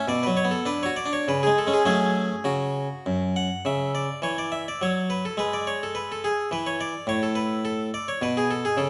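Classical, baroque-style suite movement in triple metre, grave yet flowing, played with rubato by a solo harpsichord across its whole 8.9 seconds, cut from a longer piece. The French-style instrument, on one set of strings, sounds airy, plucked and bright, sitting up front as it spans from F#2 to F#5 and states its opening idea twice, the second time from 3.6 seconds. A wet recital-hall reverb surrounds it, and nothing sounds above 11 kHz.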